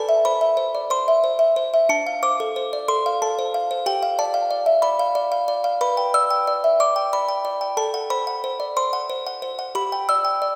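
A delicate, tinkling music box, slightly out of tune and close-miked up front, plays this tender, innocent classical lullaby alone in a straight 6/8 at 61 dotted-quarter beats per minute, spanning D4 to E6 as the harmony moves from Am through Dm7 and G7 before settling into G major at 5.8 s, all bathed in the lingering reverb of a church or concert hall in this brief fragment of a longer piece.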